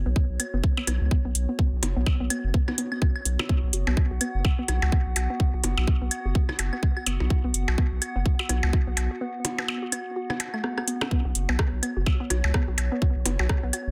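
A round, deep analog bass sits up front in this sparse, cool minimal techno excerpt, its dark, nasal sustain pumping against the sidechain from F#1 to C#2 at 126 BPM in 4/4 with a 58% swing on the sixteenths. A tight, layered electronic kick drives the groove alongside a booming analog drum machine whose metallic hi-hats and rim clicks carry a tape-warm tone from a small room. Claves and percussion blips, overdriven and echoed on tape, are re-recorded in a large room. A hollow, bouncy square-wave pluck with a detuned noise layer plays a short-decay riff through chorus, phaser and tape echo, while a warbling, nostalgic lo-fi pad drifts alongside it with slow attack and long release. A filter sweep on a synth arpeggio sound runs throughout, a break arrives at 9.2 seconds, and a drum fill at 10.6 seconds leads back in, all set in a digital ambience and tuned to A4 = 439 Hz.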